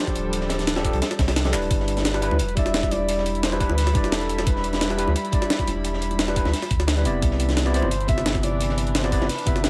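Lush and warm, this liquid drum and bass excerpt moves at 174 BPM in 4/4 with a straight feel, in G major, cut from a longer piece. A barky, overdriven tine electric piano played through a combo amp carries the accompaniment with delay, while a dark, reedy chamber string section holds sustained chords in the background with sidechain pumping, the harmony moving from F69 to G6 at 1.7 seconds and to Cmaj9 at 7.2 seconds. The drums stack a knocking, layered electronic kick, an up-front, pitched-up jungle sampler-style kit with handclaps, hi-hat and a gritty medium-tuned snare, and a saturated breakbeat kit in the background with high-pass filtering on its hats, snare and room, with a drum fill at 1.5 seconds. A deep, round sine sub bass sits up front with a fast attack, and low-tuned bongos played with hard hands enter at 2.0 seconds in the background. A mellow flugelhorn takes the solo melody in jazz style, with vibrato, a soft attack and delay, first from 2.2 to 5.1 seconds and again near the end. 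Light reverb and small room ambience frame the whole mix.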